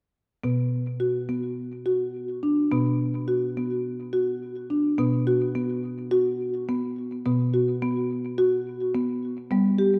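A solo marimba played with soft mallets opens at 0.4 seconds, its woody, round tone sitting up front with tape echo and a wet concert hall reverb as it moves from a Bm chord to a B5 at 5.0 seconds in this meditative, hypnotic world piece in B hirajoshi at 106 BPM, cut from a longer work.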